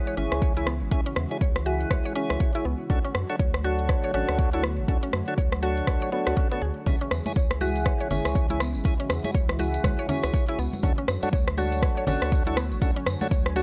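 Hypnotic and driving, this afro house excerpt rides a deep, up-front electronic kick, an afro-pop kit of metallic hi-hats and rim clicks, and a round analog bass with tube saturation, moving between C#m and Dmaj7 with a swung sixteenth feel. Woody, mallet-like synth pluck arpeggios with phaser and tape echo sit over mellow tonewheel organ stabs turning through a slow rotary speaker, while a smooth, detuned sawtooth pad holds chords in the background, and the pad, pluck, organ and bass all pump with the sidechain. At 6.9 s bright congas and a jingly tambourine join, and the recording stays dry and gritty with little reverb.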